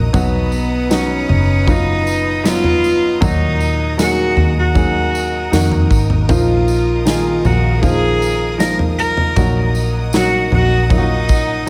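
Studio reverb bathes this short cut from a longer pop ballad, giving it a heartbroken, longing mood at a straight 78 BPM. A single bowed cello carries the melody up front, its pure, floating tone played sul tasto with a soft attack, entering at 0.2 seconds. Beneath it, an intimate grand piano supplies the accompaniment, its natural sound carrying audible action noise, while a lush studio string section holds smooth, even chords with vibrato high above. A vintage muted fingered electric bass adds a dark, round, punchy low end. An acoustic studio drum kit with a tight kick, medium-tuned snare and toms keeps time, and a jingly, bright tambourine sits far in the background of a large room. The harmony moves from B through E-flat minor and B-flat suspended fourth to E-flat minor over B-flat, all within one continuous section.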